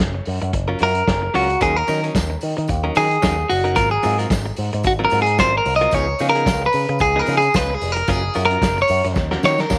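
A clean electric guitar carries the melody up front, its picked, compressed lines sitting warm and forward as it solos from 0.8 seconds through the end of this short disco excerpt in Eb minor. Underneath, a second direct-recorded clean guitar supplies bright, scooped accompaniment, while a picked electric bass run through an envelope filter sounds punchy and close. A vintage drum kit with a fat snare, tight kick and hi-hat has a muffled, lo-fi small-room character with a rolled-off top, and it closes with a fill from 9.2 seconds. A jingly, saturated tambourine enters at 1.6 seconds, tucked into the background. At 111 BPM with a light sixteenth-note swing, the danceable, glamorous groove moves through Gbmaj7, Ebm7, Ab13 and Db9, all bathed in a moderate spring reverb.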